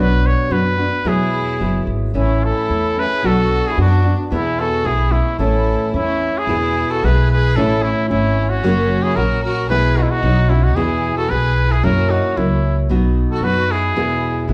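A soft-attacked, classically styled solo trumpet opens this festive, proud mariachi excerpt up front, carrying the melody over fingerpicked nylon-string guitar and plucked upright bass at 112 BPM in a straight 2/4. The guitar sounds full-bodied and deep, with audible finger squeak, while the steel-strung bass gives a woody, dark foundation, both sitting forward in the mix. At 1.1 seconds a chamber violin section joins well behind them with a bowed second line, its tone biting and earthy yet smooth on top, touched by light vibrato. The music begins in A major and moves to E major at 6.5 seconds, where a new section brings harmonies such as F#7 and B before settling on E. A large studio reverb with a fairly wet, live-room character surrounds the band as it plays together in one space.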